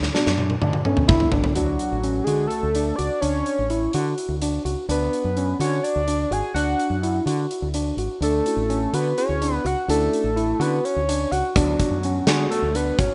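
A rough home demo mix with light reverb and small room ambience, its top end dulled, carries this bright, intricate progressive instrumental in 7/8 at 252 BPM counted in eighths, in D lydian, cut from a longer piece and moving between Bm and Dmaj7. A huge arena drum kit with a punchy kick and a medium-tuned snare opens with a fill beneath a gritty, barky overdriven tine electric piano playing arpeggios through a combo amp with delay, a direct fretless electric bass, and a clean, mellow tine electric piano in the background that drops out at 1.5 seconds and returns at 8.5. From 1.6 seconds a fat analog lead carries the melody up front, its sawtooth and square wave tones thickened by a sub octave, shaped by a filter sweep, with vibrato on sustained notes.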